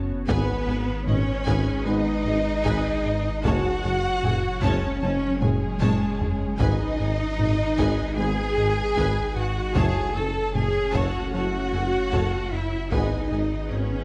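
Relentless and tense, this cinematic hybrid orchestral and electronic film cue at 76 BPM in G# phrygian sets an evolving, warbling wavetable pad with chorus, a rubbery square bass riff and a saturated sub bass beneath lush bowed violin sections carrying the melody and a portamento second line, a focused viola section, cello and double bass sections, a mellow French horn section, a very quiet trombone section, a tuba and heavy-stick taiko drums that break into a fill at 5.4 seconds, all circling G#m and F#madd9 in a concert hall reverb.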